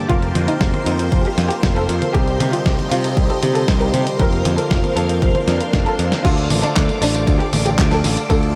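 A dreamy, reverb-soaked italo disco excerpt at 117 BPM, melodramatic and nostalgic, where a lush sawtooth string machine with phaser and ensemble chorus holds sustained chords over a barky tine electric piano's stabs, a dark, woody violin section carries the distant bowed melody through tape echo, a bright, growly picked bass and punchy electronic kick anchor a gritty sampler-style kit of snare, hi-hat, handclaps, tambourine, toms and crash, and a very quiet electronic swell and drum fill lead at 6.2 s from Fsus4 and Cm into Dm.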